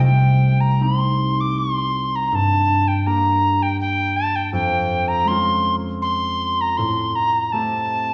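Bathed in the wet reverb of a church or concert hall, this short cut from a longer Celtic slow air drifts at 80 BPM in a rubato 3/4 with uneven beats, its longing, haunting mood set in C dorian. A reedy wooden whistle carries the melody between G5 and D6, pure-toned with a crisp, chiffy attack and a touch of vibrato, while a thumb-plucked concert harp rings out beneath it across a span from C2 to C5. The chords move through Cm, Gm, Db/F and Am7, with both instruments sitting up front for the full 8.1 seconds.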